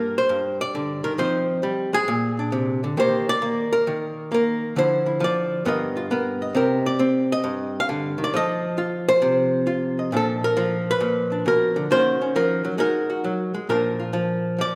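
A dark, clean, hollow-body electric archtop guitar, picked, compressed and up front, plays this playful solo jazz piece alone in Bb major at a 134 BPM swing in 4/4. It moves through chords such as Gm7, Ebmaj7, G7alt and Bbmaj7 in a moderate scoring-stage reverb before settling on Bb at 13.7 seconds in this brief clip cut from a longer performance.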